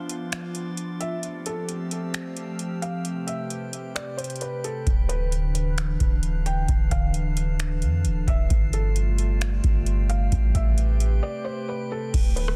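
The booming analog drum machine, with its deep kick, metallic hats and softly clipped snare, drives this hazy, spacious cloud-rap excerpt at 132 BPM in a half-time feel, while a warbling tape-like pad with sidechain pumping and a glassy, drifting harmonics texture hover beneath a felt-muted upright piano melody, whose filtered notes carry audible action noise and digital delay, and at 4.9 seconds a deep, boomy 808-style bass enters under the D dorian chords.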